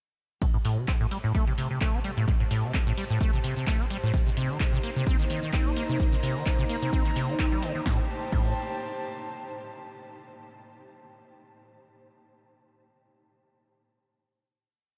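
Acid house at 129 BPM with a light 16th-note swing, driving and hypnotic, built on an up-front four-on-the-floor electronic kick and a rubbery, resonant sawtooth acid bass line with accents, slides and filter sweeps, saturated through tube and tape, over chords moving from Am7 to Cm7. A punchy analog drum machine adds claps, snare, hats and crash, while a very quiet, gritty sampler-style breakbeat of hi-hat, ride and snare sits underneath, and a floating chamber string section played sul tasto fades in from 0.4 seconds, pumping against the kick. A detuned, warbling lo-fi pad joins at 4.9 seconds with phaser and chorus, and the strings hold the final Am7 from 7.9 to 9.7 seconds, ringing on after the other parts drop away, in a dreamy mix soaked in huge ambient reverb.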